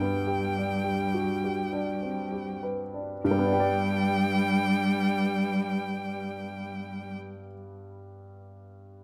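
Classical slow romantic movement for piano trio in G major, cut from a longer piece, tender and serene at 48-54 BPM in a rubato 3/4 that slows over the opening 3.3 seconds, with a clear, intense bowed violin singing the melody with vibrato above a rich, smooth-topped cello second line, both stopping near 7 seconds while the dark, mellow, up-front baby grand piano carries its long-sustaining accompaniment on to 9.0 seconds in a moderate recital hall reverb.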